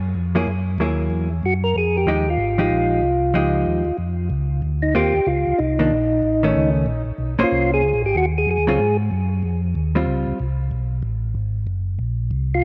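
Jazz with a soulful, late-night swing, cut from a longer piece, built on a mellow tonewheel organ that carries the bass through a slow rotary speaker and chorus vibrato. A dark, compressed hollow-body electric guitar accompanies up front from 0.3 seconds, while a second, round tonewheel organ with third-harmonic percussion takes the melody from 1.5 seconds, its slow rotary sound trailed by tape echo. Extended ninth and major-thirteenth chords color the harmony, and a light reverb surrounds the trio.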